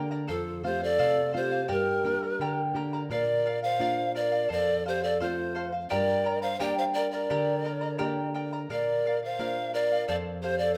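Festive and earthy, this Andean folk piece is cut from a longer performance and moves in a straight two-beat metre. A pan flute carries the melody up front, its breathy, brilliant and polished wooden tone shaped by vibrato and a soft, expressive attack. Beneath it a large end-blown quena plays a second line with a mellow, hollow straight tone and tongued notes. The charango and a nylon-string guitar open the recording at 0.0 seconds with fingerpicked accompaniment: the charango's doubled strings, some in octaves, give a shimmering sparkle, while the classical guitar sits dark and low, with the occasional finger squeak. Both flutes enter at 0.3 seconds, and the harmony circles through F, G minor and B-flat as the music moves into a new section at 3.1 seconds. A moderate recital-hall reverb surrounds the ensemble.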